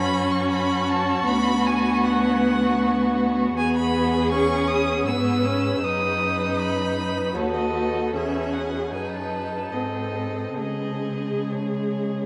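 A string quartet begins together in a solemn, melancholic slow romantic movement in triple time, with the first violin's focused, smooth-topped melody and vibrato floating above a more distant, expressive second violin. The rich viola sits up front with portamento, while the warm cello, also close, carries a soft-attacked, expressive bass line shaped by rubato. A huge, wet reverb places the players in a vast, echoing space, and the passage is cut from a longer classical work.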